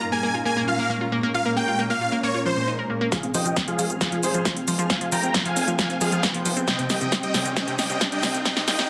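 Bittersweet and euphoric, this uplifting trance passage in F minor moves at 135 BPM in a straight 4/4, cut from a longer piece. A huge, detuned supersaw carries the melody up front with vibrato and dub echo, while a shimmering, ethereal pad holds sustained chords and a round, vintage analog pluck spins arpeggios, all three pumping with sidechain. At 3.1 seconds a build-up begins as a punchy, layered kick and a big-room kit with metallic hats, shaker and snare arrive for a drum fill. A fat, saturated analog bass sits very quiet beneath, and filter sweeps move across both the supersaw and the pluck. A very quiet riser joins at 5.1 seconds as the chords move from Bbm7 through Fm to Csus4, all inside a moderate digital room reverb and a dense, heavily limited modern master.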